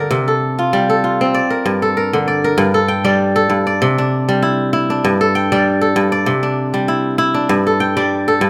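A solo kora carries this short West African traditional passage, its fingerpicked strings sounding bright, crisp and ringing, placed up front in the mix. The mood is hypnotic and flowing, with a gentle swing on the sixteenth notes in a steady four-beat metre. The kora covers a broad span from G2 up to G5, moving through harmonies of Gm, C and G5. An opening phrase gives way to a second section at 2.6 seconds, which runs until the clip ends at 8.5 seconds. A moderate recital hall reverb surrounds the instrument, and the passage is clearly cut from a longer piece.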